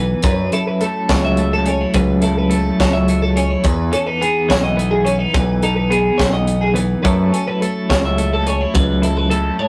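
An up-front twelve-string electric guitar spins bright, twangy arpeggios high in its range, from G#4 to E5, giving this short math rock and midwest emo excerpt its intricate, playful character. Beneath it, a second clean, compressed twelve-string electric guitar plays accompaniment across a broader span with a tremolo effect, moving through F#m7, Emaj7 and back to F#m7. The tempo sits at 70 BPM in a straight 6/8, counted in dotted quarters. A modern picked electric bass, direct and up front, anchors the low end between B1 and F#2. A crisp fusion drum kit with a high-tuned snare, punchy kick and hi-hat enters at 0.2 seconds, its airy, polished studio-room sound contrasting with the overall rough rehearsal-room recording, which carries light reverb and saturation.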